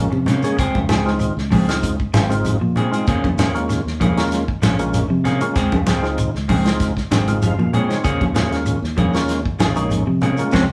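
Recorded by a band playing live in one small room, this short excerpt from a longer piece has a moderate studio reverb that gives the ensemble a close, natural presence. It is a joyful, funky afrobeat groove in a straight 4/4. Up front, a percussive tonewheel organ plays full, lightly overdriven chords through a slow rotary speaker with chorus vibrato, and it breaks into a fill from 7.1 to 8.0 seconds. A round fingered electric bass anchors the low end, while a dark, scooped semi-hollow guitar plays stabs and a clean, picked electric guitar plays arpeggios in the background. The drum kit is acoustic and dry, with a tight kick, a medium-tuned snare, hi-hat and a rolled-off top, supported by hard-hand congas ringing in the background and a grainy, mellow shekere. The harmony moves between Eb9sus4 and Dbmaj7, and the whole band hits an accent at 10.5 seconds.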